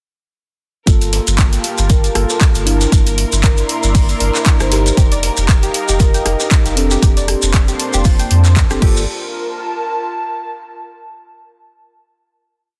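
This deep house piece at 117 BPM carries a warm, moody feel, with a light swing on the sixteenths and a drop that runs from 0.9 to 9.1 seconds before an airy pad holds a final note until 11.1 seconds. A punchy, overdriven kick sits up front in a four-on-the-floor pattern, joined by a house kit of bright hats, claps, rim clicks and a crash, a very quiet, gritty looped breakbeat with edits, and a grainy shekere played by hand in sixteenths. Underneath, a round sine sub bass drives a dotted rhythm, while a dark, detuned analog pad sustains chords through Gm9, C9/G, F9sus4 and Bbmaj9/F, all pumping against the kick. A mellow tine electric piano adds syncopated rootless stabs through phaser and dub echo, and a breathy, nasal pad with slowly shifting chords and a rich chamber violin section holding a high note fill the background. A metallic, ringing vibraphone plays short answering phrases from 1.9 seconds, and a soft, round pluck enters at 5.0 seconds with a repeating 16-step arpeggio through chorus and digital delay, all framed by light reverb and a dense, heavily limited master.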